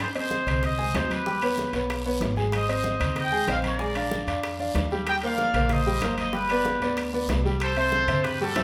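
A bright, punchy trumpet section with vibrato carries the melody up front over raspy guiro and ringing timbales from the opening of this passionate, danceable 189 BPM salsa passage, joined almost at once by a clear, worn grand piano, thick-skinned congas and tight, high-tuned bongos in the background, then at 0.5 s by a dark, growly pizzicato upright bass and very quiet woody claves, the band playing together in one room with large studio reverb as the chords move from Ab/C through Ebaug7 and Bb7 to C6.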